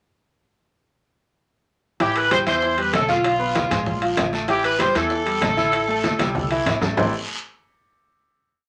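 A brilliant horn section with light vibrato leads this short, fiery salsa piece with up-front call phrases, over a clear piano montuno in octaves with audible action noise, a woody pizzicato upright bass playing a tumbao that anticipates the chords, bongos in steady eighths with hand bell, background congas with slaps and open strokes, a raspy guiro and ringing timbales on shell pattern and bell, all set in a wet studio reverb, with a drum fill at 6.2 seconds leading to a final chord at 7.0 seconds.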